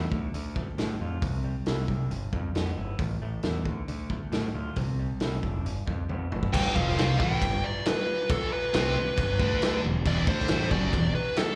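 A growling, overdriven picked bass sits up front in this brooding, angsty stretch of quiet-loud alternative rock, joined by a loose indie drum kit with dark cymbals and a punchy kick, while a lo-fi, slightly broken-up guitar through a small old amp plays arpeggios with tremolo and slapback echo over Dm, Cadd9, G6 and A5. After a drum fill, the arpeggiated guitar stops at 6.5 s and the section turns heavy: a dark, smooth overdriven lead guitar carries the melody up front, three bright distorted guitars play a riff beneath it (a very quiet double-tracked high-gain one, a high-gain one with slapback echo in the background, and a very quiet thick fuzz one), and a piping tonewheel organ with slow rotary speaker holds quiet sustained chords. The band is heard live through the venue's PA with light club reverb.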